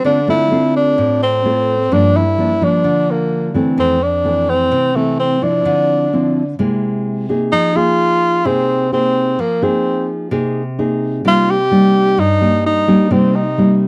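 A breathy, mellow tenor saxophone sings an up-front jazz solo with light vibrato, subtone and scooped notes over thumb-plucked classical nylon-string guitar in this intimate, wistful bossa nova fragment at 128 BPM in straight 4/4, moving from D minor to F minor at 7.5 s, tuned to A4 = 436 Hz and captured as a dry, close 1970s-style studio recording with small room ambience.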